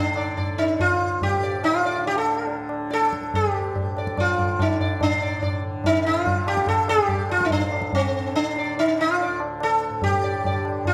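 A plectrum-plucked sitar with a buzzing tone and ringing sympathetic strings sits up front, carrying a solemn, longing melody in raga bhairavi in D at 143 BPM over a softly plucked tanpura drone that shimmers low beneath it, while a high-tuned, close and dry tabla with a short ring joins at 0.2 s, all set in a moderate recital-hall reverb in this brief fragment of a longer Hindustani classical piece.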